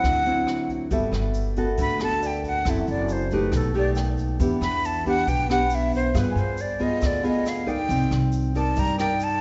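Heard through a moderate concert-hall reverb with softened highs, this romantic, relaxed bossa nova excerpt in G major moves at 138 BPM in a straight 4/4, where a breathy, expressive jazz flute sits up front and takes a solo from 0.9 s over the dark, fingerpicked nylon-string guitar. An upright bass plucks woody, growly lines beneath an airy brush kit with a boomy kick, hi-hat and rim click, while a grainy egg shaker enters at 0.9 s and a baby grand piano with audible action noise stays in the background. The harmony drifts from D9 through Gmaj9, F#m7b5 and Baug7 to Em7, G7b9 and Cm9.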